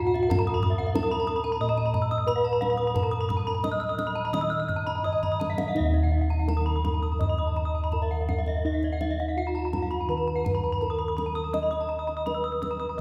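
Bathed in a concert hall's wet 2.0-second reverb, this brilliant, ceremonial Balinese gamelan passage in Eb pelog moves at 83-93 BPM in a straight 4/4: a mellow bronze metallophone struck with padded disc mallets carries the melody with a boxy, shimmering tone, two bright horn-mallet metallophones spin ringing arpeggios above it (one of them airy), round bossed gongs beat up front in the bass, and a deep kendang plays a fill at 5.0 seconds that leads into a new section at 5.8 seconds.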